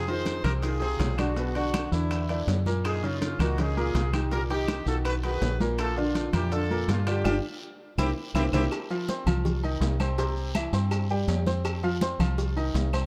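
Darkly produced with light reverb, this fiery, driving salsa excerpt at 164 BPM pairs a brilliant, punchy horn section carrying the melody until 8.6 seconds with an up-front, foam-muted dub fingered electric bass and a clear, worn baby grand piano whose action noise sits close and intimate. Beneath them run thick-skinned damped congas, very quiet round bongos and cowbell, and a raspy guiro, along with a background layer of ringing timbales and agogo bells, woody distant claves and grainy maracas. A band accent arrives at 7.3 seconds, joined by a drum fill from 7.6 seconds.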